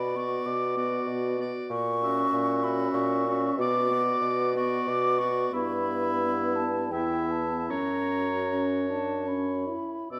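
A hollow, pure-toned concert flute carries the melody high above the ensemble, its soft attacks and vibrato giving this slow, elegiac wind quintet movement a solemn, songlike voice. The piece moves in a rubato 3/4, drifting between 68 and 99 BPM, with harmony passing from B minor through F#7 over A#, back to B minor, then E minor over G before settling on F# at 7.7 seconds. Beneath the flute, a clear, distant oboe traces a second line while the clarinet sits quietly in the background as accompaniment. A warm French horn with a smooth top and vibrato fills out the middle of the texture, and an up-front bassoon anchors the bass with light vibrato and a warm tone. The recital hall reverb, with a 1.8-second decay, lends a roomy, dark sheen to this fragment cut from a longer piece.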